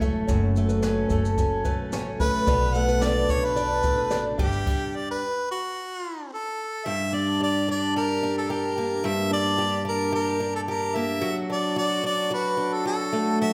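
Sunny and carefree, this acoustic pop excerpt at 110 BPM opens with a bright, shimmering, octave-doubled twelve-string guitar up front, a full-bodied fingerpicked steel-string guitar playing background arpeggios, a woody, thumpy pizzicato upright bass, and a brushed drum kit with dark cymbals, a high-tuned snare, a punchy kick and shaker; a close-miked harmonica with light vibrato and scooped notes takes the solo melody from 2.2 seconds, and after the bass, drums and fingerpicked guitar fall away by 4.8 seconds, the harmonica and twelve-string carry on together in a wet, reverberant hall.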